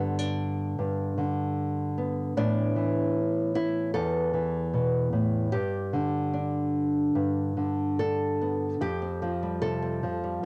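A small, warm nylon-string guitar sits up front and fingerpicks a pastoral, peaceful folk passage in G major at a rubato 75 BPM in 4/4, moving from G through Asus2 and G5 before shifting to Fadd9 at 8.8 seconds, all in a cassette home recording with light reverb and small room ambience, cut from a longer piece and ending at 10.5 seconds.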